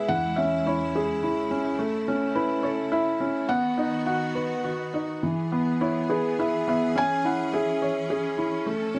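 A felt-muted upright piano carries the melody up front, its thick-felt tone soft, mellow and intimate, set in a plate reverb, in this tender, innocent children's lullaby in 3/4 at 105 BPM with a rubato feel. Beneath it, a bright studio string section holds sustained bowed chords with vibrato, intense and close yet sitting lower in the mix. Across this 9-second passage from a longer piece, the harmony moves through C#m/E, A, B, E and C#m in a moderate studio room.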